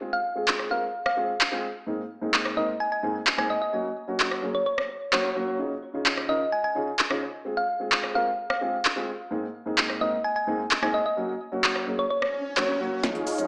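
A straight 4/4 pulse at 129 BPM drives this anthemic, uplifting festival progressive house excerpt, where a dark, up-front baby grand piano pumps under sidechain through a Fm–Abadd9–Gb–Dbadd9 progression while a round, tine-like FM pluck with chorus and tape echo carries the melody and a punchy big-room drum kit of crisp hats, handclaps, rim click, shaker and snare, re-recorded in a large room, runs up to an electronic swell at 12.3 seconds before a huge, euphoric supersaw riff and a tape-warm electronic kick burst in at 13.0 seconds, all within a moderate digital room reverb and a small-speaker sound.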